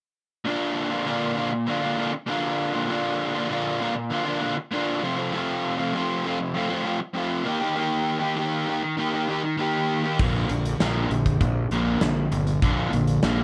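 A lightly reverberant classic rock passage, driving and sunny, opens with a warm, double-tracked garage guitar alone, its overdriven, picked riff moving through Bb, F and Eb in a straight 4/4. At 10.2 seconds a fuzzy, punchy fingered bass and a dark, smooth big-room drum kit of kick, snare, hi-hat and crash cymbal join the guitar as the chords return to Bb, all three parts sitting up front until the cut at 13.4 seconds.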